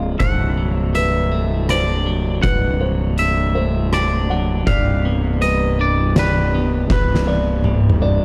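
A growly, overdriven fuzz bass sits up front, holding a low C under a cathartic, melancholic post-rock excerpt in 3/4 that moves from D7/C to G/C. A clean electric guitar with lush chorus and tape echo and a soft, felt-muted upright piano in the background play arpeggios, while a bright, twangy electric guitar carries the melody and a very quiet pedal steel adds sustained chords with slide and volume swells. An oversized, low-tuned drum kit with a fat snare and boomy kick sounds gritty and saturated in a stone room, closing with a fill from 6.9 seconds.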